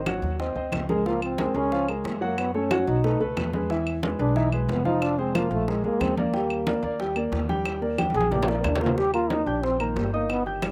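A warm grand piano and a thumpy upright bass open this short Afro-Cuban jazz fragment in Eb major, moving at a brisk 182 BPM in straight 4/4 with a sunny, danceable mood. The piano sits up front with a natural tone and long sustain, while the pizzicato bass has the dark, woody weight of gut strings. Congas, bongos and claves come in at 0.1 seconds. The congas sound ringing and low-tuned, played with soft hands and carrying a compressed, saturated edge. The round bongos sit distant in the background, as if in a large room, and the claves add a vintage, band-limited click. At 0.9 seconds a breathy trombone takes the solo in a whispered, intimate jazz style, mellow and soft in attack with light vibrato, while the harmony passes through chords such as Ab9, Gbm and Bb7 before settling on Ebmaj7. A drum fill at 8.0 seconds leads into a return of the opening section, which lands on Eb6, and the dry, open-air sound carries little reverb.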